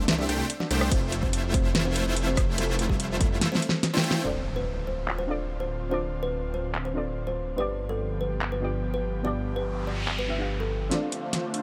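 Playful and bright, this future bass passage moves in a half-time feel, opening straight on a drop where a woody, hollow kalimba carries the melody with tape echo while huge, detuned supersaw chords play a riff through a low-pass filter. Underneath, a thick, saturated detuned saw bass sits up front with chorus, and the kalimba, supersaws and bass all pump against the sidechain. A pop kit with a fat snare, metallic hats, handclaps, rim clicks, ride and crash plays throughout, its cymbals, hats and snare softened by low-pass filtering, and a punchy electronic kick joins at 0.9 seconds before dropping away at 3.3 seconds. After a drum fill and a band accent, an impact lands at 4.2 seconds as the supersaws drop out and a soft, round pluck with lush chorus and tape echo joins an airy, breathy pad, both pumping under the sidechain. The harmony moves from Fmaj7 to Dm7 and G7, and a noise sweep builds before the kalimba and bass stop near 10.9 seconds, when the supersaws briefly return over a second drum fill and a rising riser. 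A light reverb gives the whole mix a touch of space in this cut from a longer piece.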